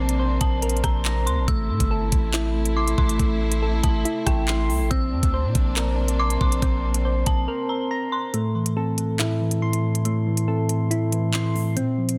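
A tense, cold half-time drill piece opens with lush bowed strings holding sustained chords, soft, round synth keys playing arpeggios through chorus and tape echo, and a deep, sine-toned 808 bass up front, with a knocking kick, crisp hi-hats, handclaps and rim clicks arriving almost at once, and an eerie, inharmonic FM bell soon tracing a high second line. The bass drops out at 7.5 seconds for a brief break, and at 8.3 seconds the strings and bell end as a clean tine electric piano takes up the accompaniment while the kick is muted. The mix is dense, dry and heavily limited.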